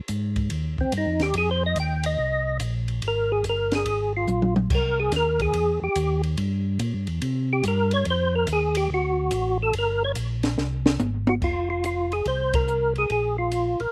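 A dry, close recording with little reverb and an open-air feel opens this soulful, late-night soul jazz organ trio excerpt, swinging in 4/4. A mellow, round tonewheel organ carries the bass line from the start, its slow rotary speaker and chorus vibrato giving the low end a dark, clean glow. A compact cocktail drum kit sits up front with a high-tuned snare, punchy kick, hi-hat, ride, crash and toms, adding fills at 4.3 seconds and again near the end of the solo passage. At 0.8 seconds a fat, percussive tonewheel organ enters with the lead, its third harmonic percussion, slow rotary speaker, chorus vibrato and slapback echo shaping a solo that moves through minor, altered dominant and major colours. After 11.4 seconds the tune shifts into a new section built on bare power chords, punctuated by a band accent at 12.5 seconds.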